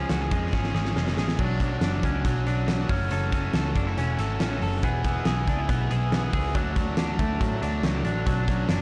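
Bittersweet and wistful, this short cut from a longer jangly indie pop piece moves at 140 BPM in a straight 4/4. A bright, twangy clean electric guitar, recorded direct and compressed, picks arpeggios bathed in lush chorus and tape echo. Beneath it, a biting overdriven guitar plays a dark accompaniment, while a vintage foam-muted picked bass supplies a round, punchy low end. The big rock drum kit enters at 0.1 seconds with a fat snare, punchy kick, hi-hat and crash cymbal, sitting up front in a big room, and it plays a fill from 0.5 to 1.4 seconds before the music moves into its main passage. Chords run from C# to Bmadd9, F#m7, E and D, and the whole mix carries light reverb inside a blown-out, overdriven recording.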